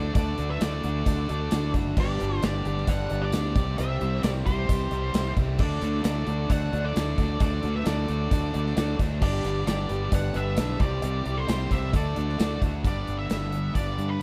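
Classic rock at 132 BPM in D mixolydian, this driving, swaggering clip from a longer piece pairs a dark octave-fuzz lead guitar melody, with slapback echo, and a compressed fuzz second line over background riffs from an overdriven electric guitar and a tight, bright distorted guitar, a growling fingered bass up front, a punchy gated 80s drum kit with tambourine and a polished stone-room sheen, a very quiet boxy swing-style acoustic guitar with finger squeak, and faint metallic cowbell, all cycling through D, G and C before a closing turn to G at 12.8 seconds.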